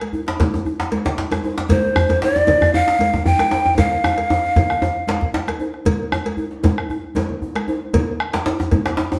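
Earthy and festive, this short cut from a longer West African traditional piece moves at a straight 115 BPM in 4/4, played live by a drum ensemble in a stone room whose reverb lends the whole performance a wet ring. Congas with a bright, thin skin, a metallic cowbell and a djembe set the groove from the start, soon joined by a round, close bombo and a second djembe; both djembes carry metal rattles. The opening djembe sits deep and distant in the background, struck with soft hands, while the later one is medium-tuned, up front and carries a vintage, band-limited colour. At 1.7 seconds a breathy cane pan pipe enters, reedy and full of chiff, singing between C5 and G5 with vibrato and a soft attack before dropping out at 5.3 seconds. A drum fill runs from 3.8 seconds and leads the ensemble into a new section at 5.9 seconds, with the drums carrying on to the end.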